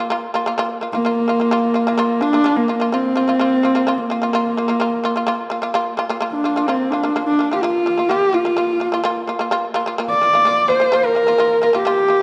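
A bowed horsehead fiddle leads this short cut from a longer Mongolian folk piece, its husky horsehair tone carrying the melody up front with expressive vibrato and portamento from a single player. The mood is proud and vast, set in a straight, steady four-beat metre. Beneath it, a fretless shamisen plucked with a plectrum plays arpeggios in a narrower range, its mellow, buzzing attack giving the accompaniment a percussive yet powerful presence. Both instruments sound together from the very start through to 12.2 seconds. A generous concert hall reverb surrounds the pair, and the production is dark and warm, with the top end rolled off to leave a rounded, spacious sound.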